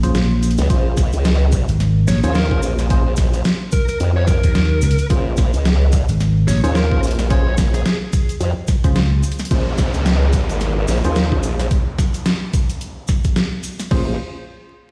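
A playful, funky glitch hop excerpt opens on a drop with a knocking, overdriven electronic kick, a dubstep kit of deep snare, bright hi-hats and crash, punchy, growly slap bass, worn, slightly out-of-tune electric piano stabs pumping through delay, and a grainy cabasa in the background, soon joined by a saturated, chorused formant-sweep wobble bass, while a dark, picked lead guitar carries a delayed melody from 2.1 to 8.0 seconds before the kick briefly drops out, a drum fill hits at 9.2 seconds and an electronic downlifter sinks through the stone room's reverb and vinyl crackle.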